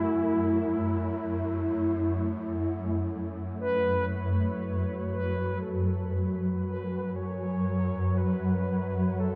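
Unsettling and desolate, this dark ambient drone drifts in free time in F# minor, cut from a longer piece and set in a vast, echoing space with a huge, wet reverb tail. A swarming, tense drone sits up front from start to finish, its detuned, granular sine tones evolving between F#2 and A3 with their own built-in reverb. Above it, a mellow horn-like synth lead carries the melody between E4 and C#5, its full-bodied, vintage sawtooth tone warbling with vibrato, chorus and delay, shaped by a filter sweep and a soft attack. Barely audible bronze gongs with a beating, metallic ring play soft arpeggios with padded beaters until 3.1 seconds. Around 4.1 seconds the harmony moves from A over F# to an F# power chord as the soft lead fades in, holding the bleak, suspended atmosphere to the close.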